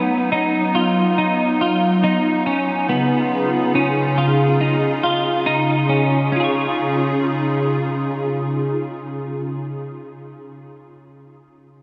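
A hollow, flute-like pad warbling through ensemble chorus holds sustained chords while a clean, picked electric guitar, compressed and treated with chorus and tape echo, spins arpeggios over it, both up front in this blissful, dreamy dream pop fragment at 70 BPM in Db mixolydian, moving from Cb to Dbadd9 at 2.9 seconds and soaked in a huge ambient reverb with a 7.5-second tail.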